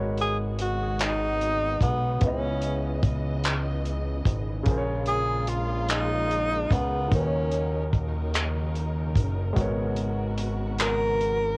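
Slow, sultry six-eight R&B at 49 BPM in G# minor: in this yearning excerpt, a breathy tenor saxophone carries the melody up front with vibrato and scooped notes, over a mellow grand piano and lush, bowed strings set in the background, all three colored by cassette tape, while a fat, detuned sawtooth analog bass and a dry, muffled soul kit of tight kick, hi-hat and handclaps underpin the chords G#m11, C#m9, A#m7 and D#m7 in a small, lightly reverberant room.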